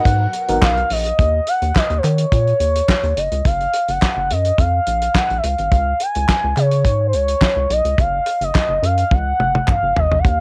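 A dry, cassette-recorded home take of funky, danceable early-eighties boogie funk at 106 BPM opens with a mellow, phased FM electric piano with tremolo and a very quiet, lush string machine ensemble, both gone by 1.2 seconds, leaving a smooth, gliding sawtooth portamento lead with vibrato and chorus up front over a rubbery, resonant square bass with transformer saturation, a damped 70s drum kit with a fat snare and tight kick that plays a fill at 9.1 seconds, and a hollow group handclap in the background.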